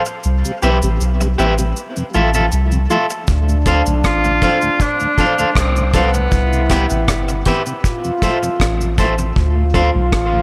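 Hypnotic and deep, this short dub reggae passage moves at 79 BPM in a straight 4/4, centred on D dorian and cut from a longer piece. It opens on a break where a twangy, slightly broken-up electric guitar, a cabasa, a round, soft sub bass and a mellow, dark tonewheel organ set up the groove, the guitar and organ both trailing dub echo and the organ turning through chorus vibrato and a slow rotary speaker in the background. At 3.3 seconds the full band arrives: a deep, dry drum kit with a tight kick, hi-hat and rim click sits up front, while a breathy, intimate trombone takes a second line with dub echo. A clear tenor saxophone, distant and roomy with light vibrato, carries the melody from 4.0 to 7.0 seconds, its echoes hanging in the light reverb of the studio space. The harmony circles through Cmaj7, Fmaj7 and Dm7, giving the whole passage a steady, trance-like pull.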